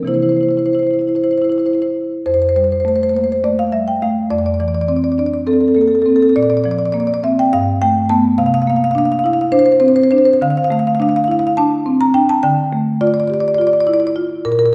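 In a rubato 7/8 pulse at 207 BPM in eighths, this hypnotic, flowing contemporary classical excerpt for solo marimba in F major features a woody, warm instrument with padauk bars played with medium mallets, ranging from F2 to Bb5 through a short opening on C7 before drifting at 2.3 seconds into a longer passage of colorful harmonies such as Fadd9, Dm9/F, Gadd9, C11 and F69/D, all set in a wet recital hall reverb heard from further back in the room.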